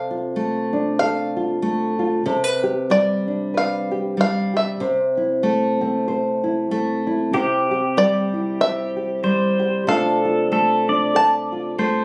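A lightly swung 4/4 at 95 BPM gives this brief, peaceful and hopeful acoustic folk excerpt an easy lilt. A mellow, twangy bluegrass banjo, fingerpicked and percussive, carries the melody up front over a thumb-plucked classical nylon-string guitar with a warm tone, moving through Dm/C, G/C, Am/C and Cadd9. At 7.3 s a clean, compressed electric pedal steel guitar joins with a slide second line and volume swells, all caught on a phone in the room with a light touch of studio reverb.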